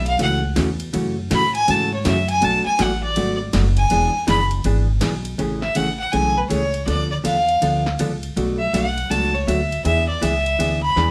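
Cheerful and swinging, this short cut from a longer western swing tune moves at a brisk 162 BPM in A major with a lively shuffle on the eighth notes. A clear, earthy fiddle carries the melody up front with light vibrato, taking a solo over the opening 5.4 seconds before the music passes into a second section. Beneath it, a pizzicato upright bass with gut strings gives a woody, thumpy foundation, also placed close to the listener. A punchy analog drum machine keeps time on hi-hat, ride cymbal and a dry, punchy snare, sitting low in the mix. A vintage hollow-body jazz guitar, clean, picked and compressed, fills in the harmony with a dark tone, moving through jazzy changes like F#m7, Bm7, E7, Amaj7 and Dm6. The band sounds as if playing live in one room, wrapped in a wet studio reverb, with some lossy compression artefacts audible.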